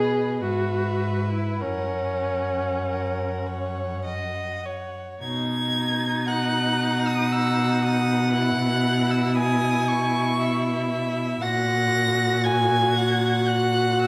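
Lyrical and serene, this slow romantic string quartet excerpt in B major drifts in 3/4 at 48-60 BPM with rubato: a distant first violin sings the melody with expressive vibrato and portamento above a close, smooth second violin line and an even, rich viola accompaniment, while a warm, expressive cello carries the bass with vibrato and portamento, the four players set in a wet recital hall reverb.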